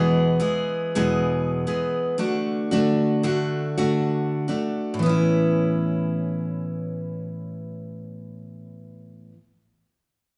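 A picked steel-string dreadnought acoustic guitar, woody and full-bodied with the mellow sound of old strings and sitting up front, opens this easy-going, carefree pop fragment at 85 BPM in 4/4 with a light sixteenth-note swing in A major, moving from E to D before settling on Aadd9 at 5.0 s and ringing on until 9.4 s, captured as a live band in a large studio room with moderate reverb and a soft, dulled top end, cut from a longer piece.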